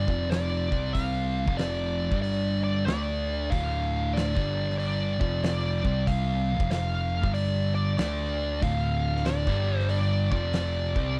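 Brooding and sludgy, this short stoner and doom metal passage is cut from a longer piece and rolls along with a swung, heavy 4/4 gait. Two thick fuzz guitars grind out the riff together across the full 11.2 seconds, one dark and distorted, the other tucked into the background, cycling through power chords on F, C and G with a recurring D minor. Beneath them an overdriven picked electric bass growls in the low register, bright and punchy against the murk. An oversized, low-tuned acoustic drum kit enters at 0.1 seconds with a fat snare, punchy kick and hi-hat, its sound saturated and gritty with a rolled-off top, set in a stone room. Up front, a fuzz lead guitar carries a high melody through wah, distortion and slapback echo, its tone warm against the heavy bed. The whole recording is dry and close, in the manner of a 1970s studio session.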